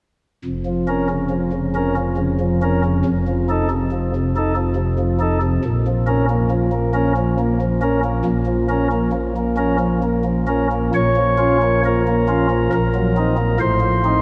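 In a slow, flexible 3/4 at around 69 BPM, with a rubato feel that lets each phrase breathe, this grave and solemn chorale-style classical piece unfolds in B-flat minor. A solo pipe organ on soft flute stops carries the whole passage from 0.4 seconds, its sound warm and up front, with a chiff at the start of each note and a baroque voicing that spans from deep pedal tones to a clear upper line. The harmony opens on B-flat minor over F, moves to F7 and settles back on the home chord before a new phrase arrives at 10.9 seconds. That closing phrase darkens briefly toward a half-diminished chord over B-flat and then an F7 over A, leaving the music suspended as this fragment of a longer work breaks off at 14.2 seconds. A long, wet church reverb surrounds the organ, letting every chord hang in a vast, resonant space.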